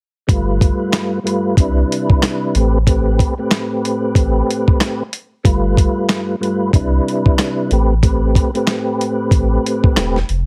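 Swung 16ths at 93 BPM drive this dark, reflective boom-bap hip-hop excerpt in A minor, where a gritty, sampler-style soul drum kit with a thumpy kick, medium-tuned snare, hi-hat and handclaps sits up front over a round, deep sine sub bass, while a mellow tonewheel organ with chorus vibrato, a slow rotary speaker and a filtered, cassette-tape character cycles through G7, Cmaj7 and Am7, all within a heavily compressed, radio-like mix touched with light reverb.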